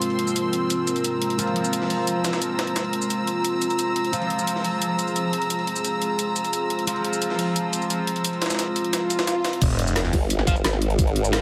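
A heavily compressed, radio-like sound sits in a lush hall reverb as this futuristic, aggressive slice of dark technical drum and bass runs at 175 BPM in F harmonic minor, opening on an F minor chord with a deep, moody ambient pad, intimate bowed strings played sul tasto, and sludgy overdriven guitar stabs with dub echo, all driven by an overdriven kit of woody snare, bright hats, shaker and crash over a very quiet, gritty jungle sampler-style kit. An electronic swell rises from 9.0 seconds into a drop at 9.6 seconds, where the pad and strings stop and a knocking overdriven kick arrives with a swirling, phased, detuned saw bass and a sub drop. At 10.1 seconds a formant-sweep wobble bass takes over, up front through to the end of this cut from a longer piece.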